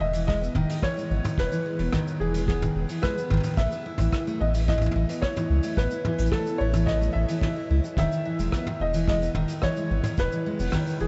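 A dreamy, reverb-soaked mix with vinyl crackle and a rolled-off top frames this delicate, playful folktronica excerpt in E major at 109 BPM, moving from Emaj7 to Asus2 and back. A full-bodied picked steel-string acoustic guitar plays arpeggios roughened by 12-bit sampler grit and tape echo, while a mellow felt-muted upright piano carries the melody through its own tape echo, and a round, tube-saturated sub bass sits up front. A small-room brush kit of hi-hat, rim click, shaker and toms, joined by a tight kick from 0.3 seconds, keeps a straight 4/4 pulse.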